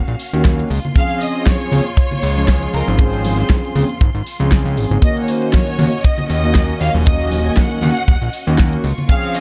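Nu-disco at 118 BPM in Eb dorian with a groovy, cosmic mood and a light 16th-note swing, this excerpt rides on a tight, up-front kick, a fat, saturated analog bass and an overdriven pop drum kit with a fat snare, while very quiet, bright congas sit distant in a large room. Mellow synth brass with chorus and a clear, distant string section both pump against the kick, holding sustained chords that move between Ebm7 and Dbmaj7. From 1.0 s a lush, expressive symphonic violin section carries the melody through tape echo, over a faint mains hum in the studio ambience.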